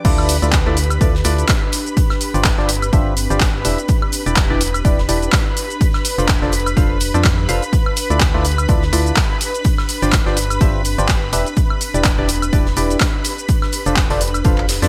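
A punchy, tape-warm electronic kick drives this bittersweet, soulful piano house drop at 125 BPM with a swung 16th-note feel in D dorian, joined by an analog drum machine's handclaps, hi-hat, shaker, woodblock and crash under gated reverb, a very faint arena kit adding hi-hat and fat snare, a dark, hollow FM bass, a mellow, phased organ stab riff with delay, a silky string pad and an ethereal, airy background pad, both pumping against the kick through chords cycling from Dm69 to F6 in a bright 1980s-style digital sheen.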